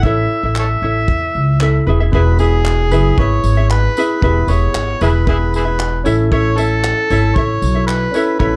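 Acoustic pop at 115 BPM in E major, heartfelt and easy-going, moving from A to E and back to A: an amplified, gritty harmonica leads up front with light vibrato, scooped notes and tongue slaps over lightly fingerpicked ukulele and a woody, pizzicato upright bass. A cloth-damped, thuddy kit in a small room adds a tight kick, handclaps and tambourine with a rolled-off top. A polished grand piano enters in the background at 2.1 seconds, all within a dark, warm production with light reverb.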